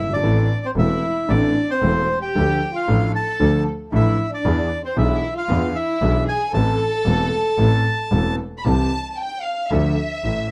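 Tango in A minor at a rubato 114 BPM, tense and sultry, in which a reedy, airy bandoneon carries the melody over a dark, sul tasto violin section playing a second line, a warm vintage grand piano accompanying through Am, Dm and E7, and a clear bowed double bass with vibrato, until the bandoneon drops out at 8.4 seconds and the violins take a solo from 8.7 seconds over the continuing piano and bass in this dry, close, 1970s-style small-room recording cut from a longer piece.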